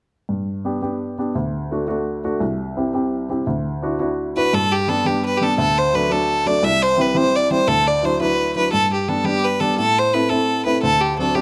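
Close, detailed microphones and a light reverb give this lively, cheerful fragment of Celtic folk an intimate, up-front sound. It moves at 114 BPM in a straight 6/8, counted in dotted quarters, and sits in G major. An upright piano opens alone at 0.3 seconds, its woody, slightly detuned tone and short sustain carrying the accompaniment through a cycle of G, D, C and Dadd9. A single bowed fiddle takes the melody from 4.4 seconds, focused and a little boxy, with a light vibrato. Once the fiddle is in, the harmony repeats before turning through Am and closing on D7, with both instruments playing until 11.4 seconds.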